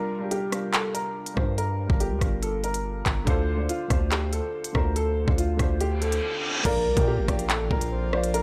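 A knocking, up-front drill kit of kick, crisp hi-hats, handclaps, rim clicks and crash drives this cold, menacing half-time hip hop excerpt, joined at 1.4 seconds by a heavy, aggressive distorted 808-style bass. Above it, a worn, boxy grand piano carries the melody through tape echo over a soft, felt-muted upright piano moving from Gm7 to Dm7. A reverse cymbal rises as the drums drop out at 6.2 seconds, and at 6.7 seconds an impact lands on Bb, bringing in a round, dark octave-layered synth lead and an airy, breathy pad, both chorused and in the background, all captured in a gritty hardware recording with light reverb.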